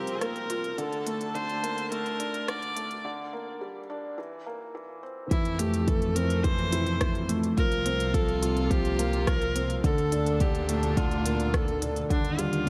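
A light, small-room reverb and a filtered low end give this short cut from a longer piece of piano-and-strings electronica a hopeful, luminous glow. Up front, a felt-muted upright piano plays a mellow, intimate riff with audible action noise, short sustain and a delay, while a single viola carries the melody with smooth, even vibrato. Behind them, a chamber string section holds sustained chords with a reedy, gut-string, period-style tone, pumping under sidechain and shaped by a filter sweep through the opening build-up. Beneath it, a dark bowed double bass section, tube-saturated and also pumping, supplies the bass. A produced electronic kit with crisp, tape-tinged hi-hat and rim click runs throughout, and after a break from 3.0 s, the drop at 5.3 s brings in a deep, layered electronic kick, as the harmony moves from C7sus4 and Bbmaj7/D toward Fmaj7 before closing on Ebmaj7.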